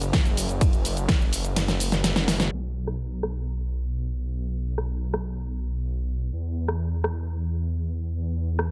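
This short excerpt of festival progressive house opens straight into a drop at 126 BPM in a straight 4/4, powerful and euphoric from the first beat. A punchy, overdriven electronic kick sits up front alongside a big-room dance drum kit whose huge snare, hi-hat, ride, crash, rim click and cabasa fill out the groove. Underneath, a thick, lush detuned saw bass moves between F#1 and E2, its chorus and sidechain pumping giving the low end a breathing motion against the beat. The kick drops out at 1.6 seconds as a drum fill takes over, and from 2.5 seconds a low-pass filter sweep shapes the remainder. The sound is dry and close, with little reverb, keeping the drums and bass immediate.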